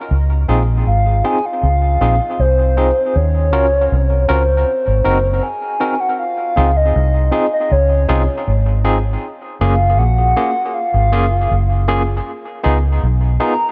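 Recorded with light reverb, this tender, sweet lovers rock reggae cut pairs a round, foam-muted electric bass sitting up front with a barky, lightly overdriven tine electric piano carrying fast tremolo and tape echo, while a hollow, woody clarinet-like synth lead with chorus and vibrato sings a soft, warbling melody from 0.9 seconds over chords moving from Dbmaj7 through Ebm7 and Ab7 to Gbmaj7 and Db7.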